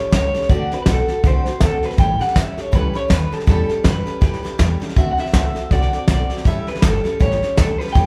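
Upbeat and retro, this swung rockabilly clip at 161 BPM in A mixolydian sets a twangy, slightly broken-up electric guitar melody with harmonic tremolo over a bright, full-bodied picked acoustic guitar with audible finger squeak, a woody, thumpy pizzicato upright bass sitting in the background, and an up-front soft brush kit with a fat snare and tight kick, all moving between D7 and A7 in a lightly reverberant room where the band plays live together.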